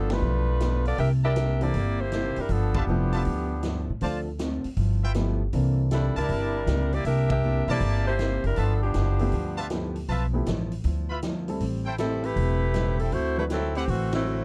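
A swinging 4/4 pulse at 158 BPM drives this joyful, energetic big band swing in G mixolydian, with a distant, roomy drum kit behind a woody, growly pizzicato upright bass up front. A bright saxophone section carries the melody over picked steel-string acoustic guitar in the background and an intimate grand piano with audible action noise, while a trumpet section with light vibrato adds stabs from 1.2 s. Band accents punctuate this excerpt at 2.7 and 7.2 seconds, and the production is dark with little reverb.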